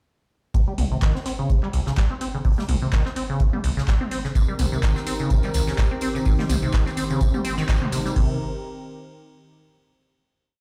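A four-on-the-floor electronic kick at 126 BPM with a light 16th-note swing drives this raw, trippy acid house piece in C phrygian, opening on Cm7, where a squelchy, resonant sawtooth acid bass riff with accents and slides sits up front through tube saturation, lush chorus, cassette tape colour, delay and sidechain pumping; an electro analog drum machine adds metallic hats, claps, toms and crash; a tight metal drum kit plays an airy looped breakbeat with edits on hi-hat and snare in the background; and from 4.4 s a warm, detuned, chorused analog pad holds bright sustained chords while a jingly tambourine plays hand-played sixteenths, the whole groove sounding through a big, reverberant room before a final chord arrives at 8.2 s.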